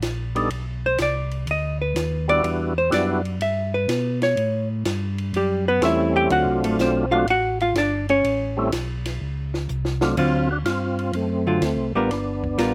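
Soul jazz organ trio in D mixolydian, bluesy and greasy, swinging at 124 BPM in 4/4, with a dark, clean hollow-body jazz guitar soloing up front with slapback echo until 10.2 seconds, over a round, mellow tonewheel organ bass carrying chorus vibrato and a slow rotary speaker. A lightly overdriven, percussive tonewheel organ takes the melody from 0.4 seconds through its own slow rotary and chorus vibrato, while a compact cocktail drum kit with dark cymbals, a high-tuned snare and a punchy kick plays a fill from 9.7 seconds into the next section. The sound is dry, with little reverb and the feel of an open-air take cut from a longer piece.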